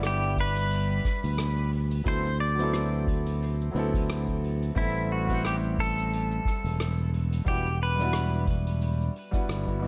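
Sunset chillout with a smooth, warm mood and a gently swung sixteenth feel, cut from a longer piece. A pedal steel guitar carries the clean, compressed melody in fingerpicked slide lines with volume swells and tape echo, entering at 0.1 s and stopping at 8.4 s. Beneath it sit a grand piano with audible action noise and delay, an up-front fingered electric bass with tube saturation, a soft brush kit of cabasa, hi-hat and rim click, and a deep, overdriven analog electronic kick re-recorded in a large room, while light reverb and small-room ambience surround the mix as the chords move from G6 through D13 and Am7 to Em9.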